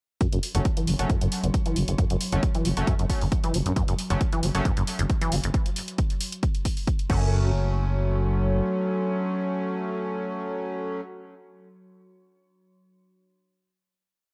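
At 0.2 seconds this driving, intense peak-time techno track kicks in: an overdriven, heavy electronic kick drum sits up front in a four-on-the-floor pulse at 135 BPM, joined by a punchy analog drum machine whose programmed open and closed hats, backbeat and crash sound gritty and overdriven, re-recorded in a large room, with the hats and cymbals pumping against the kick. A squelchy, resonant sawtooth acid bass plays an eight-step line with slides in F# minor, carrying a filter sweep until about 5.5 seconds, with ensemble chorus and analog delay. Beneath it, a growling, thick FM bass gallops in sixteenth notes, also up front and pumping. Edgy, bright sync-sweep polysynth stabs hit in syncopation, one nasal chord shape moved in parallel, touched with chorus and delay, while a metallic, eerie, warbling FM drone hovers in the background with a mellow, vintage shimmer. The groove holds until about 7.3 seconds, when a final hit arrives; the FM bass trails off around 8.6 seconds, while the stabs and drone ring out to the end of this dry, hard-edged piece.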